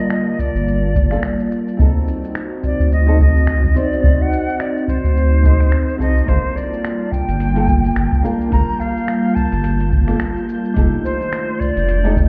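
A lightly swung 107 BPM groove in 4/4 carries this smooth, wistful sunset chillout excerpt in G minor, where a deep electronic kick, gritty tape-toned finger snaps, hi-hat and shaker, and a round sine sub bass up front support a fingerpicked flamenco guitar, a soft breathy pad with chorus moving through Gm9, D7b9 and F13, and a crisp, bright silver concert flute melody with vibrato and digital delay, while a faint wind-like tuned noise texture drifts in at 8.1 seconds, all heard muffled as if through a wall in a club-sized reverb.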